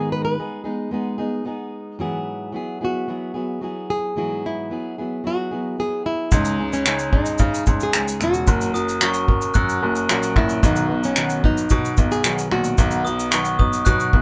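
Acoustic pop in B major at 111 BPM, easy-going and heartfelt, this cut from a longer piece captures a band playing live in one room with light reverb: a fingerpicked classical nylon-string guitar carries the melody over an up-front, woody, full-bodied jumbo steel-string guitar with old strings. At 6.3 seconds a bright, polished baby grand piano takes the bass line as an unplugged kit played with bundle sticks enters with a tight kick, finger snaps and shaker. From 8.7 seconds a dark, bell-like glockenspiel struck with brass mallets adds a ringing second line.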